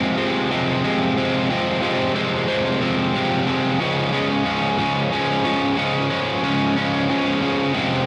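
A crunchy, overdriven electric guitar, bright, picked and double-tracked, sits up front alone in this restless, moody rock excerpt, moving from F minor to D-flat at 3.8 seconds within a range of C3 to D-flat 4. The pulse is a slow 61 beats per minute in a straight 6/8, and the guitar carries spring reverb and a cassette-tape character. Light reverb and digital ambience frame this home recording on cassette.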